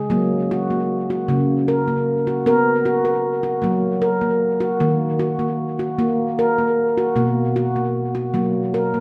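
World meditative music in a slow, straight 6/8 at 51 BPM, this short cut from a longer piece features a solo handpan with a mellow, ringing stainless-steel tone, played with soft fingertips and sitting up front from 0.0 to 9.0 seconds. Its notes, spanning B2 to Bb4, drift through Gb, B5, Ebm and back to B5, trailed by a diffuse ambient delay. A wet recital-hall reverb surrounds the instrument, giving the gentle, meditative mood a spacious glow.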